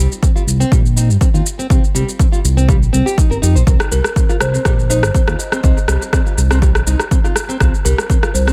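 A punchy, overdriven electronic kick sits up front in this earthy, spiritual afro house fragment at 122 BPM alongside a smooth, mellow sawtooth-and-square synth bass with vibrato that pumps from sidechain compression, while layered, overdriven electronic shaker and rim clicks run through analog delay, a dark, fingerpicked nylon-string guitar with audible finger squeak plays tape-echoed, sidechain-pumped arpeggios, and from 3.9 s a woody, buzzing, vintage kalimba adds a ringing melody, all set in an echo-heavy mix with a small-room ambience.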